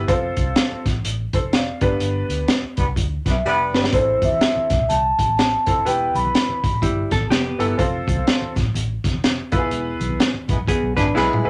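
Uptempo 1960s-style soul at 125 BPM in 4/4 with a swung eighth-note feel, this passionate, driving excerpt is cut from a longer piece and moves through F, G, Am, Em, F and E. A crunchy breakbeat drum kit sits up front with a punchy kick, a high-tuned snare and a gritty, saturated, rolled-off top, joined by a dark, foam-muted fingered electric bass with a round, amped tone. A bright upright piano carries the accompaniment throughout, its woody, slightly detuned voice intimate and worn, with audible action noise and long sustain. A mellow horn section in tight octave doubling adds brief second-line figures at 2.8 and 10.5 seconds, while a vibraphone played with soft mallets, motor off, takes a metallic, ringing melody from 3.3 to 6.8 seconds. Very quiet, low-tuned congas with a thin skin enter at 4.2 seconds, and a dark, clean hollow-body jazz guitar plays short riffs, the first at 6.8 seconds. 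Band accents and drum fills punctuate the groove, all set in a moderate small room.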